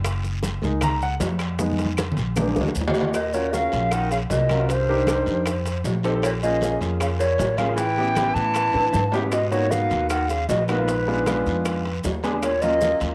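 A grand piano solo opens this fiery, sophisticated Afro-Cuban jazz passage in Eb minor at 155 BPM, its polished, present tone bathed in plate reverb as a drum fill arrives at 1.6 seconds over a bed of percussion and an up-front, woody pizzicato upright bass with a thumpy, steel-string attack. The percussion section is dense and detailed: ringing metal-shell timbales sit distant in a large room, tight high-tuned bongos and thick-skinned, damped congas sit in the background, and raspy guiro, grainy saturated maracas and very quiet, dry claves fill out the texture. At 3.1 seconds the flute takes the melody with a pure, hollow, tongued tone and vibrato, colored by a cassette-tape character and plate reverb. Beneath it a mellow baritone saxophone plays a second line in jazz style, roomy and distant with scooped notes. The harmony moves through rich jazz chords such as Ebm7, Cm9, A9 and Bb7b9, with a second drum fill at 8.7 seconds before a return to Ebm7, all captured as a home cassette recording with moderate studio reverb.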